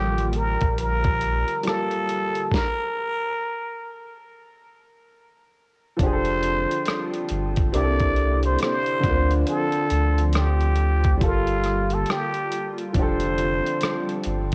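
A plunger-muted trumpet carries the melody from the opening moment of this nostalgic, melancholic lo-fi hip hop excerpt, its bright, raspy tone growling with a wah-wah colour, light vibrato and scooped notes, close-miked and up front with a cassette tape grit. Beneath it, a clear, woody upright piano plays accompaniment with long sustain, a round sine sub bass sits deep and prominent, and a hollow, flute-like pad hangs in the background, its vintage warble thickened by ensemble chorus. A dusty, sampler-style drum kit arrives at 0.2 seconds with a thumpy kick, medium-tuned snare, rim click and hi-hat, compressed and tape-toned with a lazy swing. A stop begins at 2.5 seconds, where the harmony drops away, and the upright piano takes a fill from 3.4 seconds before the chords return at 6 seconds to carry the second section. Light reverb and digital ambience frame the homespun cassette sound.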